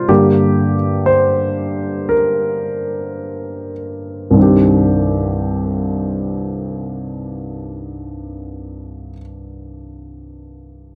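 A dry, close 1970s-style studio sound with small-room ambience frames this short, heartbroken pop fragment, cut from a longer piece. A warm, up-front grand piano carries the accompaniment on its own, slowing down over the first 4.4 seconds as it rests on a G minor chord. At 4.4 seconds it moves to a C minor add 9 chord for the emotional second section, sounding present until it ends at 10.9 seconds.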